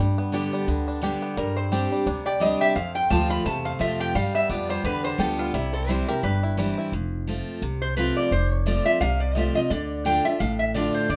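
Driving and joyful, this short bluegrass passage moves at 173 BPM in 4/4 with a swung eighth-note feel. A bright, full-bodied picked steel-string acoustic guitar sits up front with accompaniment throughout, while a woody, thumpy pizzicato upright bass anchors the low end. A mellow, twangy bluegrass banjo carries the melody with fingerpicks from the start until 6.9 seconds. A metallic, nasal lap resonator guitar, played with fingerpicks and slide, joins on melody at 1.4 seconds and stands out up front, taking a solo with a steel bar from 6.9 seconds to the end. The chords move from G through Gsus4, F, G7 and C, then settle on F and Dm in the second section, all framed by a light reverb.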